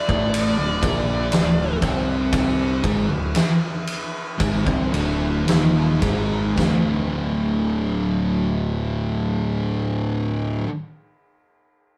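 An oversized, low-tuned drum kit with a boomy kick, fat snare and dark cymbals sits up front through 6.8 seconds, driving this sludgy, heavy stoner and doom metal excerpt at around 54-61 BPM in 4/4, as two thick fuzz guitars grind out a riff from D2 to C4 (one in the background), a growly, bright fuzz picked bass holds the bottom, and a dark, compressed fuzz lead guitar with wah sounds a D5 in the opening 1.8 seconds while the band, playing live in one room with moderate reverb, slows during the first 6.6 seconds before moving into a new section.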